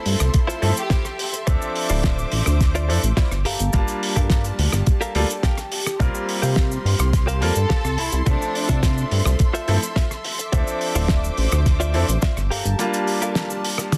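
A thumpy electronic kick drum sits up front with a tape-warm, sampler-style punch, driving this sunny, feel-good nu-disco excerpt at 106 BPM in a straight 4/4. Beside it, a glossy chorused synth bass with a pulse-wave, sawtooth and plucky filtered attack rolls through the low end, while a dry, damped 70s acoustic kit adds a fat snare, hi-hat, rim click, toms and cabasa. A brilliant grand piano with audible action noise and long sustain carries the accompaniment, pumping under sidechain and trailing delay, as a rich string section holds smooth, lightly vibratoed chords behind it. A clean, direct-recorded electric guitar picks a compressed riff with subtle chorus and delay, stepping out for a fill at 4.9 seconds, and a lush violin section briefly touches the melody near 0.8 seconds before taking it again around 7.4 seconds through tape echo. The harmony cycles through Fmaj7/C, Dm9, Gm9 and C7sus4 in a small room, and the dense, heavily limited mix thins into a break at 12.8 seconds as the bass drops out.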